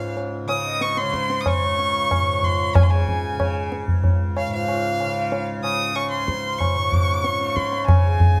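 A straight, even four-beat pulse from the low-tuned, ringing tabla sits up front and close and dry, coming in at 0.2 seconds in this short cut from a longer Hindustani classical performance in raga hamsadhwani. The mood is radiant and serene. A single bowed violin carries the melody in a high register, its focused, clear tone shaded with vibrato. Beneath it, a pedal harmonium plays a reedy, breathing second line an octave lower in range. A softly plucked tanpura holds a buzzing, shimmering drone in the bass throughout. Close, detailed microphones and a light reverb give the recording an intimate, glowing sound.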